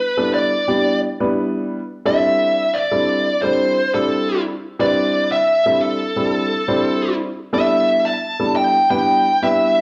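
A dark, distorted electric lead guitar opens this driving, funky jazz fragment at 88 BPM in a straight 4/4, carrying the picked melody up front with plate reverb and slapback echo. At 0.2 s a warm baby grand piano with short sustain joins in accompaniment, also up front with the same plate reverb and slapback echo, as the harmony moves from A9sus4 to D9sus4 at 2.1 s and back to A9sus4 at 7.5 s. It sounds like a live gig heard through the venue's PA, with wet club reverb surrounding the pair.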